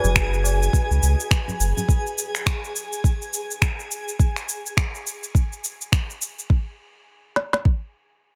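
Organic downtempo with an earthy, hypnotic swing, where a deep, round sub bass and bright, thumb-plucked harp arpeggios treated with shimmer reverb and delay stop within the first two seconds alongside a ringing, low-tuned tabla in the background, while a twinkling granular texture sparkles until 4.2 seconds, overdriven electronic shaker and finger snaps sit up front, and a tape-warm organic electronic kit with a soft kick and woody snare drives on to 7.8 seconds under a dense, heavily limited master.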